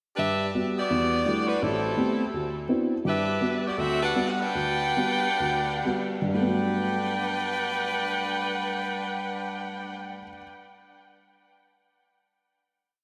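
An edgy saxophone section with vibrato leads this short, swinging jazz piece in G major, playing a motif-based melody in sentence-like phrases harmonised in four-part block voicing, with delay on the horns. A dark, woody upright piano with audible action noise and a vintage character accompanies in stride style with close voicings, moving through a Gmaj7, Em11, Am9, D13 progression at a 4/4 swing between 116 and 167 BPM. The tempo slows from 3.0 to 6.3 seconds before a final chord rings out from 6.3 seconds, the brassy, dreamy mix soaked in a lush hall reverb.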